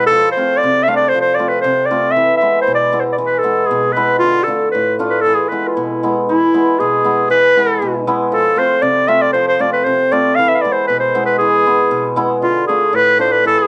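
Bittersweet yet festive, this short klezmer excerpt moves at 117 BPM in a straight 2/4, set in E phrygian dominant. A clarinet carries the melody from start to finish, its soft attack and classical poise giving the solo line a tender, singing quality up front. Beneath it, a hammered dulcimer supplies the accompaniment throughout, its ringing, shimmering strings sitting up front alongside the lead. The harmony circles through F, E and Dm, with the opening passage restated from 6.3 seconds, lending the music a dance-like sense of return. A moderate studio reverb adds a gentle sense of room around both instruments.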